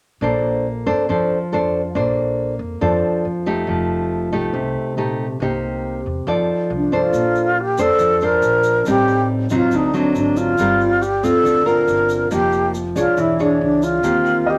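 An airy, expressive alto flute with vibrato enters up front at 6.8 s over fingerpicked classical nylon-string guitar and a woody, growly pizzicato upright bass in this romantic, relaxed bossa nova excerpt, while a grainy, bright egg shaker joins in the background at 7.1 s, a clear concert grand piano note sounds at 14.5 s, and a moderate club reverb surrounds the sound.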